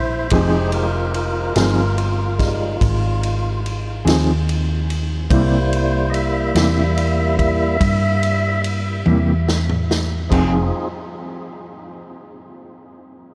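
Mournful and soulful, this slow blues in 12/8 drifts through a dreamy mix soaked in a huge ambient reverb. A fat, clean tonewheel organ sits up front, carrying a solo in sustained chords through a slow rotary speaker, its key click audible. Beneath it, a round, dark hollow-body bass played with the fingers holds the low end, also close in the mix. A mellow electric guitar with tremolo adds accompaniment in the background, while a vintage acoustic kit with a punchy kick, medium-tuned snare and rolled-off top plays ride, china cymbal and toms. The harmony moves from Fm7 to C7, and a drum fill from 9.1 seconds leads back to Fm7 at 10.3 seconds.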